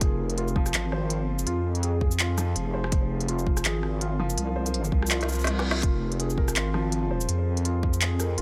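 Half-time drum and bass at 165 BPM in 4/4, with a light swing on the sixteenths, this cinematic, tense passage sits on an F minor chord and is cut from a longer piece. A felt-muted upright piano plays soft, mellow arpeggios through a tape echo, giving an intimate touch above a deep wobble bass that sits up front with a dark, detuned square-and-sine tone and a chorus. Far back in the mix, a moody analog pad holds sustained chords with a slow attack and long release, treated with chorus, phaser and sidechain pumping. The drums are up front and tape-warm, pairing a hard-clipped electronic kick with an electronic kit of woody snare, smooth hats, handclaps, rim click and shaker, re-recorded in a small room. At 5.1 seconds the kick drops out for a drum fill, and a reverse cymbal rises in at 5.3 seconds before the kick returns, all in a dry sound with little reverb.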